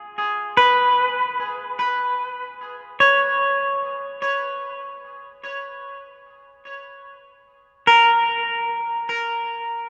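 A bright, twangy clean electric guitar plays alone and up front in free time from the start, its picked notes between G#4 and C#5 trailed by tape echo and bathed in a cathedral reverb with a 4.6-second tail, giving this ambient excerpt a weightless, warm feel until the guitar stops at 9.5 seconds.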